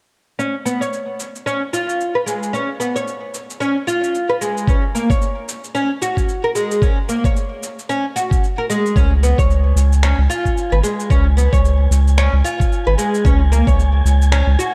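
A woody, plectrum-plucked oud spins arpeggios through tape echo and a low-pass filter in this earthy, swung organic downtempo excerpt, riding gritty, overdriven electronic shaker and finger snaps, joined at 4.7 seconds by a thumpy, up-front electronic kick, while a round analog bass with sidechain pumping arrives at 9.0 seconds and an airy, breathy wind-like noise texture drifts in the background, framed by a dark production with light digital ambience.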